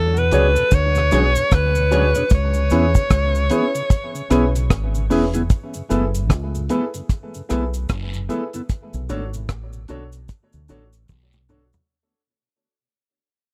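This excerpt of lovers rock reggae rides a relaxed 75 BPM in 4/4 with a swung sixteenth-note feel, set in F# minor with a smooth, longing mood. A deep reggae drum kit sits up front with a tight kick, rim click, hi-hat and toms, its dark, rolled-off top giving it a soft edge, while a round, dark fingered electric bass moves between E1 and E2 beside it. A bright alto saxophone carries the melody with vibrato and tape echo from the start, then stops at 4.7 seconds. Around it, mellow electric guitar stabs sound clean and fingered, an intimate grand piano with audible action noise and a boxy tone adds echoed accompaniment, and a flute-like tonewheel organ sits in the background with chorus vibrato, slow rotary speaker and tape echo. Cabasa and guiro, with egg shaker and group handclap, add compressed, saturated texture under a harmony of E13 and C#m7, then F#m11 and Bm7. The dry, close small-room sound fades out from 5.5 seconds, and a drum fill closes the clip at 11.1 seconds.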